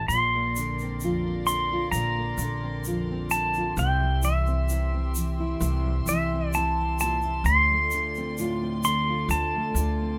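A straight 4/4 pulse from a grainy tube shaker and a woody, pizzicato upright bass anchors this haunting, reflective acoustic folk fragment, where a clean, fingerpicked pedal steel guitar sits up front with slide and volume swells over a full-bodied, fingerpicked nylon-string guitar and a distant, floating, sul tasto string section, the whole set in light reverb as the chords move from Bbadd9 to C to Dm7.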